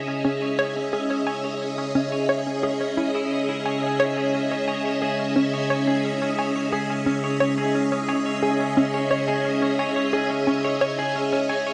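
Lush, vintage string-machine chords with phaser and ensemble chorus sit up front from the opening of this cosmic, expansive ambient excerpt in C# minor at 88 BPM, joined at 0.1 seconds by bright, clean arpeggios from a semi-hollow electric guitar with delay that fades in throughout, and at 0.2 seconds by a bouncy, detuned square-wave pluck riff with chorus and delay in the background, all held on a single C#m chord and bathed in a wet plate reverb.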